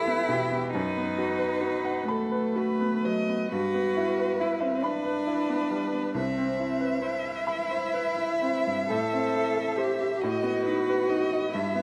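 A moderate recital-hall reverb surrounds this close, intimate recording of a piano trio, a short fragment of a slow romantic movement in 6/8 with flexible rubato. The mood is solemn and melancholic throughout. A single violin carries the melody in a warm, expressive voice, with soft attacks, vibrato and gentle portamento sliding between notes. Beneath it, a rich, up-front cello sings a smooth, even second line with its own vibrato, sitting slightly louder than the violin. A bright baby grand piano, brilliant and natural with a short sustain, supplies the accompaniment across a broad register. All three play together from the start to the end at 11.8 seconds, moving from the home minor chord through a major seventh and a minor chord before settling on a tense dominant color.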